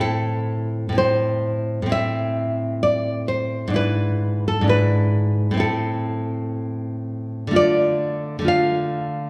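A full-bodied, fingerpicked nylon-string guitar sits up front in this short passage from a longer romantic solo classical piece, which moves in rubato 4/4 at 57-70 BPM in A minor through Am, E7/G#, Am and Dm with a passionate, melancholic mood, set in the wet reverb of a church or concert hall with lossy compression artefacts.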